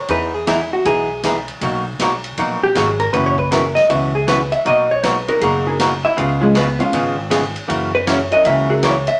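A moderate club reverb frames this cheerful, down-home western swing excerpt in B major at 158 BPM, where a dark, compressed vintage hollow-body jazz guitar solos up front over a clean picked archtop, a woody, thumpy gut-string upright bass and a distant, roomy big-band drum kit with a boomy kick and rolled-off top, while a jangly, metallic tack piano joins at 5.3 seconds.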